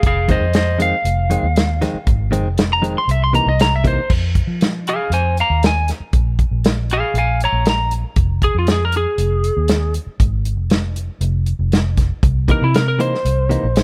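A twangy, slightly broken-up lead guitar solos from the first beat of this brooding, smoky soul blues excerpt in F minor at 118 BPM, over a dark, round, foam-muted bass and a roomy, distant-sounding soul drum kit with a punchy kick and dark cymbals. A clean, direct-recorded electric guitar adds picked stabs from 0.3 to 4.0 seconds and returns at 12.5 seconds. The straight-eighth groove moves through Fm7, C7#9 and Bb7 changes in a dry mix.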